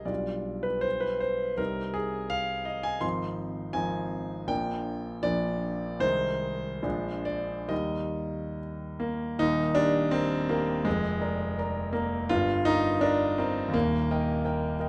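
A clear, intimate grand piano sits up front with audible action noise, playing a stormy, bittersweet romantic character piece in 2/4, with rubato between 68 and 87 BPM. It opens on a G7/B chord in C minor and moves toward Eb major from 3.0 s, spanning Eb1 to C6, with a new section arriving at 9.4 s. The natural piano tone rings in a wet stone room with a 1.3-second reverb, and the passage is cut from a longer piece, closing on Eb at 13.7 s.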